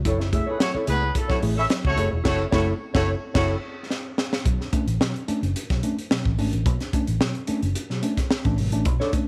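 A round, foam-muted electric bass opens this hypnotic, driving funk excerpt at 109 BPM in B dorian, quickly joined by a gritty, punchy fusion drum kit with a high-tuned snare, clean fingered electric guitar, and a worn, slightly out-of-tune tine electric piano playing lightly overdriven stabs. A tight, distant horn section carries a second line over F#m7 until 3.5 seconds, when it and the guitar drop out partway through a band accent, ahead of a drum fill. From 4.5 seconds the harmony moves to Bm9 as bass, drums and electric piano carry on in a small, pumping room, with the guitar returning briefly at the close.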